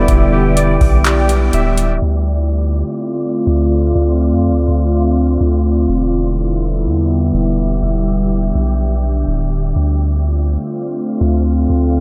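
A deep, sine-toned 808-style bass sits up front, sustaining long notes beneath a hazy, ethereal cloud-rap hip hop excerpt in a half-time feel. A warbling, nostalgic pad of dark sawtooth chords with chorus holds throughout, joined by an airy, breathy wind-like noise texture, while detuned lo-fi synth keys with chorus and tape echo play arpeggios only until 2.0 s. A booming analog drum machine with a deep kick, metallic hats and handclaps is heard just from 0.1 to 1.9 s, leaving the dreamy, low-pass-filtered mix soaked in a huge ambient reverb.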